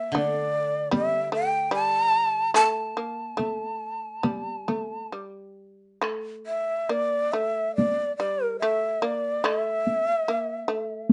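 Japanese traditional chamber music, calm and austere, drifting in free rubato around 65-78 BPM in 4/4, centred on A in the sen scale and cut from a longer piece. A close-miked bamboo shakuhachi carries the melody up front with a breathy, reedy tone, soft attack and vibrato, while a fretless, plectrum-plucked shamisen adds a buzzing, percussive second line beneath it, and a dry, woody fingerpicked koto accompanies only from 0.1 to 2.5 seconds. A taiko ensemble struck with heavy sticks sits prominently in a live room, the recording carries light reverb and a mellow top end, and the piece moves into a new section at 6.0 seconds.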